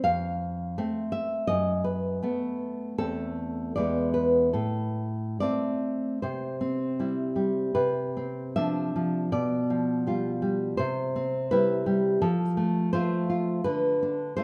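In a flexible, rubato 2/4, this romantic solo classical guitar piece, taken from a longer work, moves at an unhurried pace with an intimate, melancholic mood. A single fingerpicked nylon-string guitar plays throughout, up front, with a dark, woody, full-bodied tone and the dull character of old strings, ranging from E2 to F5. The opening section drifts through F, B5/F#, Am/E and E7 before settling on Am. From 6.2 s a second section brightens into the major, passing through C, Dm7/C, G7/B, C and F before closing on Bm/D at 13.6 s. A moderate recital-hall reverb adds a natural sense of space around the instrument.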